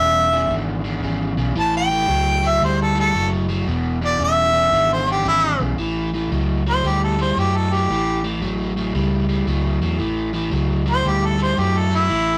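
Swung eighths in 4/4 set a gritty, swaggering blues groove in this slice of a longer piece, with the harmony moving between E7 and A7. A clear, close-miked harmonica takes the solo from the first second to the last, played in a jazz style with a soft attack, scooped notes, light vibrato and tongue slaps, its tone pushed through overdrive. Beneath it, a crunchy overdriven electric guitar picks a low riff up front, while a vintage fingered electric bass with a foam-muted, dark and round amped sound holds the bottom. The passage falls into two matching sections, the second beginning at 5.8 s on the A7 chord. Moderate studio reverb and a rough rehearsal-room capture with warm saturation give the whole track a raw, lived-in feel.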